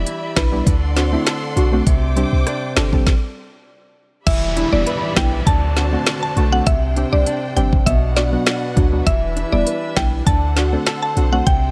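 Sultry and hypnotic, this dancehall excerpt sets a fingerpicked nylon-string guitar, sidechain-pumped bowed strings, a soft, nasal pluck with chorus, a deep, boomy 808-style bass and an electronic drum kit with a knocking kick and woody snare into a dry groove that halts at 3.1 seconds, before a mellow FM mallet pluck with tape echo takes the melody at 4.3 seconds over a background downlifter.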